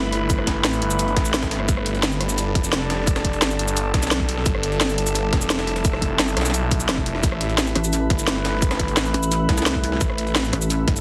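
Dark technical drum and bass at 173 BPM, tense and futuristic, where a snarling, detuned saw bass with distortion and sidechain pumping growls beneath an eerie, metallic FM drone of sustained chords moving from Asus2 through Gadd9 to Amadd9, while a tight electronic kick, an up-front drum kit with a cracking snare, cabasa, hi-hat and rim click, and a very quiet, gritty, pitched-up breakbeat layer drive the groove in a moderate digital room, until a heavy, pulsing pluck wobble bass with chorus joins at 7.8 seconds, all squeezed into a heavily compressed radio-style mix.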